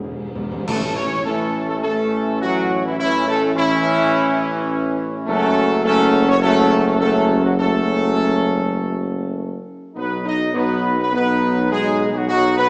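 Heard through a small speaker, this brass fanfare sits in a wet concert-hall reverb that gives it a spacious, ringing halo. Cut from a longer classical piece in A lydian, it moves at 103 BPM in a straight 4/4 with a majestic, triumphant mood. Timpani struck with hard mallets open with an articulate fill, and at 0.7 seconds bright clash cymbals and a close, dry concert bass drum mark a full-band accent as the harmony lands on A. Up front, a dark, soft-edged trumpet section carries the melody with a distant, roomy quality. Beneath it, a clear, present trombone section and a mellow French horn section with light vibrato hold sustained chords, while a tuba with a gentle attack anchors the bass. The harmony moves from A to F#m and arrives on B at 10.0 seconds, where the passage breaks off at 12.7 seconds.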